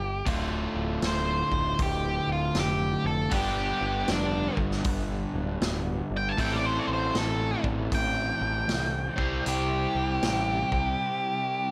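A swung 4/4 groove from a vintage drum kit with a punchy kick, medium-tuned snare and rolled-off top carries this smoky, heavy blues rock and southern rock power-trio excerpt, where a growling picked electric bass with round overdriven tone sits under a dark, double-tracked overdriven electric guitar riff, while an octave-fuzz lead guitar plays the melody up front over chords moving from Dm to G, Am and C in light reverb.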